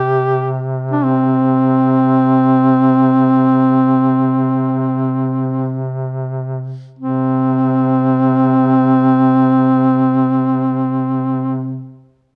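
A duduk sounds a low, sustained drone on C3 from the opening moment while a second duduk, placed up front, carries a mournful melody between C4 and G4 above it. This Caucasian folk lament unfolds in free time, its longing mood carried by the lead's vibrato and scooped notes in a folk style. The drone duduk sits softer in the balance, its tone smooth on top with its own vibrato, and both reeds share a warm character. The opening passage gradually slows until a new section begins at 7.0 s, and both instruments hold until 11.8 s in this passage cut from a longer piece. Close, detailed microphones capture the reeds within a moderate recital-hall reverb that lends the lament a sense of space.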